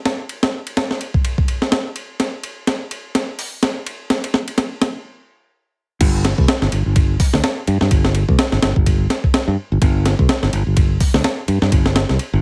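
Breakbeat cut from a longer piece, energetic and gritty, with a swung sixteenth-note feel in 4/4. A sampler-style breakbeat kit opens alone, its thumpy kick, high-tuned snare, hi-hat, ride and crash sounding compressed and up front as the opening builds. A drum fill runs from 2.2 to 5.1 seconds, then the music stops briefly before the drop arrives at 6.0 seconds. There a modern fingered electric bass enters, bright, growly and punchy, sitting direct and forward between G1 and G2 alongside the drums. The mix carries a moderate studio reverb and a heavily compressed, radio-like sheen.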